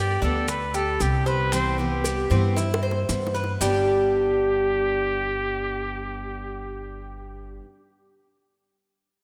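A breathy, whispered trumpet carries the melody up front over metallic, double-strung Cuban tres arpeggios, a bright jumbo steel-string acoustic guitar, woody pizzicato upright bass, and grainy maracas with tight, high-tuned bongos that drop out at 3.7 seconds, in this sunny, danceable Cuban son and guajira excerpt at 115 BPM in G major, moving through G and Cmaj7 with a drum fill from 2.6 seconds, all bathed in a lush hall reverb on a rough home demo mix.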